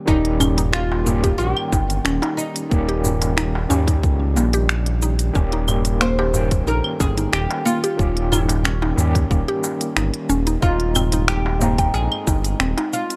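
Earthy and peaceful, this short organic downtempo cut moves at 91 BPM in a straight 4/4, resting on Eb7 before shifting to Ab/Eb at 10.6 seconds. A bright, fretless oud carries the melody with plectrum-plucked double strings, touched by tape echo, while a woody, round mallet-like synth pluck spins arpeggios through chorus, phaser and a cassette-tape haze. Beneath them, a barky, overdriven tine electric piano played through a combo amp supplies gritty chords with medium tremolo, sidechain pumping and tape echo. The smooth sawtooth-and-triangle synth bass sits up front, joined by a tight, tape-warm electronic kick and a produced kit of smooth hats, cabasa, claves and finger snaps. A deep clay-shell darbuka, played with soft hands, adds a vintage, band-limited texture in the background, and the mix stays dry with little reverb.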